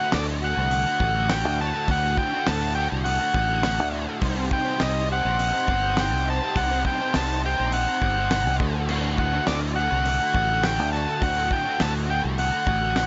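Trippy and dark, this short psychedelic rock excerpt moves at 103 BPM in a straight 4/4 over a D to Cm and back to D progression, with a reedy, overdriven combo organ carrying the melody up front through analog delay. Beneath it, a double-tracked, hollow-body semi-hollow guitar plays a picked, overdriven riff washed in flanger and delay, while a round, direct fingered electric bass holds the low end. A damped 70s drum kit with a fat snare, tight kick and dark cymbals sits dry beneath its own delay, and a very quiet, jingly tambourine sounds distant as if in a large room, all within an echo-heavy mix with a rolled-off top.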